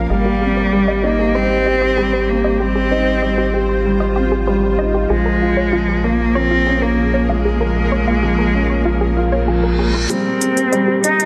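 A focused, bowed cello carries the tender, hopeful melody up front through delay and a low-pass filter that sweeps from 10.1 seconds, over a woody, boxy upright piano riff with its own delay, a deep, round analog bass, a blurred, evolving granular cloud pad with built-in reverb, and a lush, tape-tinged unison pluck arpeggio with delay and a filter sweep in the background, as this 96 BPM piano-and-strings electronica piece in Ab major moves from Abmaj7 to Bbm7 and builds with an electronic reverse cymbal from 9.4 seconds and a riser from 10.1 seconds, while smooth, filtered electronic hi-hats enter at 10.1 seconds within light digital ambience.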